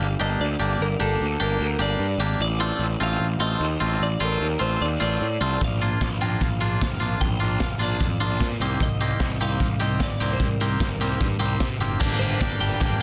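A straight 4/4 pulse at 150 BPM drives this moody, restless indie rock passage in G minor, where a bright, compressed twelve-string electric guitar carries the melody through spring reverb and digital delay over a clean, twangy guitar riff and an up-front, growly fuzz bass. A gritty, punchy garage drum kit with dark cymbals joins at 5.6 s, and a lo-fi overdriven guitar with lush chorus slips in behind at 12.0 s, the whole set in a dense, heavily limited mix with light studio ambience.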